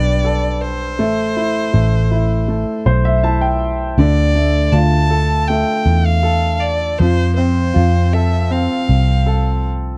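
A straight 4/4 pulse at 80 BPM carries this emotional, longing pop ballad in A minor, drifting through Gadd9, Amadd9, Dm and F. A round, dark, foam-muted picked electric bass sits prominently up front beneath a clear, open concert grand piano with deep low end, which adds a fill between 2.5 and 4.0 seconds. Above them, a single bowed violin sings the melody with a rich, focused tone, smooth top and vibrato, all captured in a dry, close 1970s-style studio sound in this short excerpt from a longer piece.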